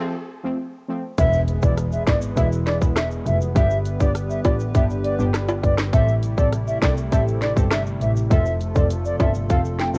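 Dancehall at 101 BPM with a tough, bouncy mood, this cut from a longer piece opens with punchy, brassy synth stabs alone over a break and riser, pumping with sidechain and chorus. At 1.2 seconds the full groove arrives: tight electronic drums with a sharp snare and dark hats sit up front beside an earthy, nasal bowed double bass, while a very quiet electronic impact lands at 1.4 seconds and ringing egg shaker and timbales add soft-handed acoustic color. An airy, crisp baroque flute carries the melody through analog delay over a hollow, detuned pad, all moving through F, E, G and Am7 with a cassette-tape haze and a small room ambience.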